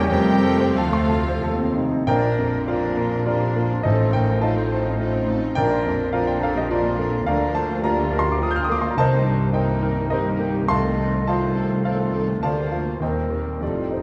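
Classical romantic piano-and-orchestra music in a lyrical, passionate, rubato 3/4, this excerpt puts a clear, intimate grand piano up front with audible action noise as it carries the melody alongside a lush background violin section, while flute, clarinet and a second, very quiet violin section weave second lines, dark bassoon and violas accompany, French horns and trombones hold very quiet sustained chords, a mellow, distant trumpet adds stabs until 1.8 seconds, and bright double basses with cellos anchor the bass, all set in a moderate scoring-stage reverb.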